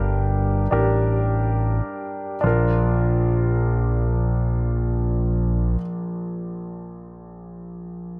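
Pop in free time with a hopeful, emotional mood, this dark-toned excerpt pairs a clear, intimate concert grand piano accompaniment, its action noise audible, with a fat, detuned, saturated analog bass that drops out at 5.8 seconds, while the opening slows down over a G minor chord before settling on B-flat at 2.4 seconds under light studio reverb.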